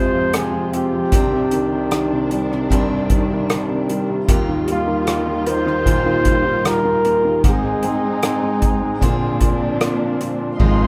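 A rough home-demo mix sits in a small room with a moderate, short reverb, giving this brief cut from a longer pop ballad an intimate, unpolished feel. The mood is heartfelt and tender, moving at a slow 76 BPM in a straight 4/4 in Eb major, with the harmony passing from Fm through Cmadd9, Ebadd9 and Ab to Bbadd9. Up front, a flugelhorn carries the solo melody with scooped notes and a punchy yet distant, roomy tone, dropping out at 9.8 seconds. A clear, polished baby grand piano provides the accompaniment, while a studio string section holds sustained, bowed chords with expressive vibrato, portamento and a smooth top. In the background, a jumbo steel-string acoustic guitar picks full-bodied arpeggios on fresh strings, complete with finger squeak and a tape echo. A drum kit played with soft mallets enters at 0.3 seconds, prominent in the mix with a boomy kick, dark cymbals, hi-hat and rim clicks, and a dark, round, hollow-body fretless bass with ensemble chorus appears only at 10.6 seconds on a single low Ab.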